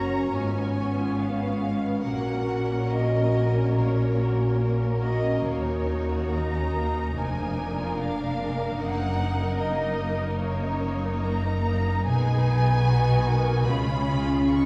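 This excerpt from a slow romantic orchestral movement features the violin section singing the melody in the upper register, its tone rich, smooth and even, with vibrato, while a second violin line moves beneath it with a close, expressive sound. The mood is serene, unfolding at 72 BPM in 4/4 and F# major with a flexible, rubato feel that lets the beats stretch unevenly. A clear, focused viola section supplies accompaniment from a distance, and a dark French horn section holds sustained chords in the background with a light vibrato and a smooth top. In the low end, a close, expressive double bass section and a warm cello section, marked by soft attacks and portamento, carry the bass, while a concert harp rings out arpeggios in the background. The harmony drifts from C#7 over G# through D#m7 and G#m before settling on C# at 13.7 seconds, all within a wet scoring-stage reverb that places the ensemble further back in the room.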